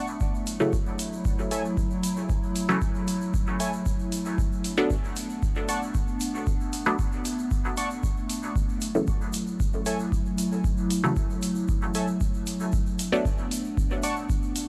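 Dub techno at 115 BPM in F# minor, cavernous and hazy, cut from a longer piece as it rocks between F#m7 and Bm7 over a dry, gritty cassette-tape sound. A deep analog kick sits up front with metallic hi-hats and a grainy, distant egg shaker, all heard in a large room, while a warbling, detuned tape-like pad holds mellow sustained chords with chorus, reverb and sidechain pumping. Muted sawtooth chord stabs, also up front, decay through phaser and dub echo, and a dark, nostalgic lo-fi keys riff pumps and echoes above them until it stops at 14.2 seconds.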